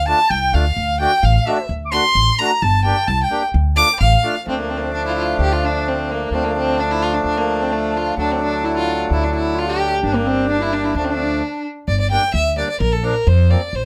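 A moderately roomy studio sound frames this soulful, bittersweet klezmer excerpt in D minor, moving at 130 BPM in a straight 2/4. A clear, smooth violin with vibrato carries the bowed melody up front, joined up front by a reedy, hollow accordion and a woody, growly pizzicato upright bass, while a warm, classical-style clarinet adds a second line from the background, dropping out at 4.5 seconds and returning at 8.2. The music halts briefly at 11.4 seconds before a closing phrase moves from G minor to B-flat.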